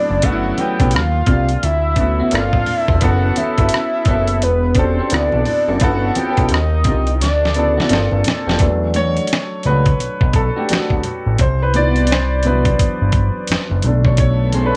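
This excerpt opens with a fat, nasal analog lead carrying the melody over a clear, worn baby grand piano, both set in plate reverb, with the lead also trailing an analog delay. It's a soulful, sensual slice of neo-soul R&B at 86 BPM in 4/4, swung on the sixteenths. The groove comes from a gritty, sampler-style drum kit with a thumpy kick, rim clicks and finger snaps, a thick, detuned sawtooth bass with a moving filter sweep, and very quiet, low-tuned congas. An electric guitar through a small old amp adds a slightly broken-up second line in the background. Rich extended chords such as Gmaj9#11 and Eb69 cycle through the opening, and a drum fill from 7.2 s leads into a piano solo at 8.6 s, just after the lead has dropped out. In the final moments, a bowed, sul tasto string section slips in behind on sustained chords at 14.2 s.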